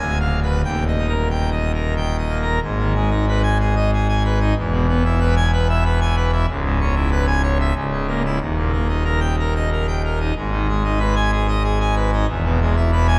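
In a straight 3/4 at 93 BPM, this majestic, stormy organ toccata in G# minor, tuned to A4 = 439 Hz, moves from a tense diminished opening into a new passage at 2.6 s that circles through G# minor, E, C# minor and D# harmonies. A solo pipe organ on full organ with mixtures plays throughout the 13.2 seconds, spanning C#1 to Ab5 with a brilliant tone and romantic voicing, placed up front. A vast, echoing cathedral reverb with a 5.3-second decay surrounds the instrument in this short passage cut from a longer piece.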